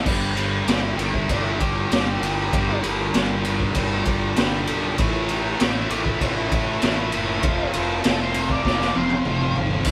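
A raw, live-in-one-room sound with light reverb carries this rowdy, swaggering garage rock excerpt at 98 BPM, where a gritty, saturated drum kit with a punchy kick sits up front beside a bright, double-tracked fuzz guitar riff, a round, overdriven fingered fuzz bass holds the low end, a dark octave-fuzz lead guitar carries the melody from 0.7 seconds, and a buzzy vintage combo organ sustains very quiet chords underneath over G, A and F, before a drum fill at 8.7 seconds.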